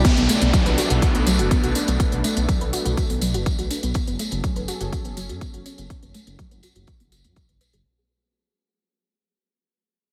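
Melodic techno at 123 BPM in B dorian, this short excerpt, cut from a longer piece, has a dark, hypnotic mood, moving from Bm7 to F#madd9 at 4.0 seconds. A punchy, up-front electronic kick drum with studio reverb anchors the groove, joined by smooth, overdriven hi-hats and a jingly, band-limited tambourine that enters at 0.1 seconds. Underneath, a deep, rumbling detuned saw bass beats and pumps with sidechain, while a soft, round pluck plays arpeggios through subtle chorus and tape echo, its filter sweeping throughout. A lush, thick unison pad holds sustained chords with chorus, phaser and vintage 12-bit sampler grit, also pumping and carrying a filter sweep of its own. An electronic downlifter runs through the first 4.0 seconds, and the whole passage sits in light reverb with a heavily compressed, radio-like sound as it fades out.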